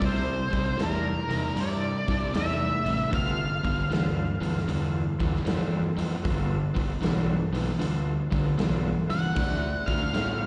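Gritty and raunchy, this 10.5-second blues rock power trio and southern rock cut swings at 77 BPM in G mixolydian over C7, G7 and D7, with an up-front, dark octave-fuzz lead guitar carrying the melody through slapback echo and digital delay, a bright, double-tracked fuzz guitar riff, a growly overdriven fuzz bass, a thick overdriven tonewheel organ holding sustained chords through a slow rotary speaker in the background, and a raw garage drum kit with a punchy kick and rolled-off top, all heard as a live gig through the venue's PA with recital hall reverb.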